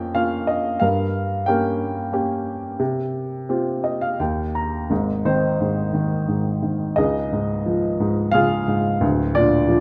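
A rubato 3/4 pulse at 88 BPM shapes this relaxed, lyrical classical solo piano fragment, cut from a longer piece, in which a warm, natural baby grand sits up front in a moderate recital-hall reverb, opens on minor and diminished chords, plays a short fill from 3.5 to 4.9 seconds, and settles into A-flat major from 4.9 seconds.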